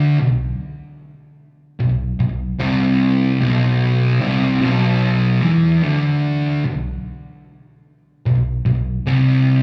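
In a straight 4/4 at 74 BPM, this brooding, heavy metal fragment from a longer piece features a solo fuzz guitar, electric, picked, distorted and double-tracked, sitting up front from 0.0 to 9.6 s in a low register on B minor, with slapback echo on the guitar and a light club reverb from a live gig heard through the venue's PA.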